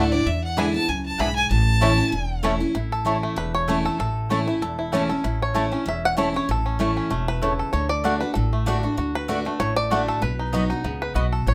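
Bluegrass in A major at a brisk 193 BPM with a swung eighth-note feel, this lively, virtuosic passage is cut from a longer piece. A clear, smooth fiddle with light vibrato opens up front and plays only until 2.4 seconds, its solo giving way at 2.8 seconds to a bright, twangy five-string banjo, fingerpicked and percussive, which has been playing from the start and now carries the melody through to the end. Underneath, a full-bodied dreadnought acoustic guitar is picked up front with audible finger squeak, while a mellow, woody mandolin adds double-string stabs. A dark, pizzicato upright bass anchors the low end. The harmony moves from E7 to A, later touching D and B, and moderate studio reverb gives the ensemble a modest sense of room.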